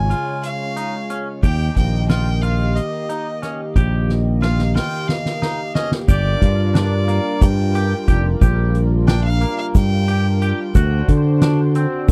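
In a driving 7/8 at 180 BPM counted in eighths, this intricate progressive instrumental excerpt rides on a soft-mallet drum kit with a fat snare and boomy kick, and a growly, up-front fingered electric bass, while a twangy, compressed electric guitar plays clean arpeggios alongside a shimmering, detuned pulse-width pad with chorus. A clear, biting violin carries the melody with vibrato and tape echo until 10.5 s, the harmony moves from Db and Eb to Gm7 and D7, and a drum fill arrives at 4.1 s. From 6.1 s a grainy egg shaker sits in the background of the dry, close 1970s-style studio sound.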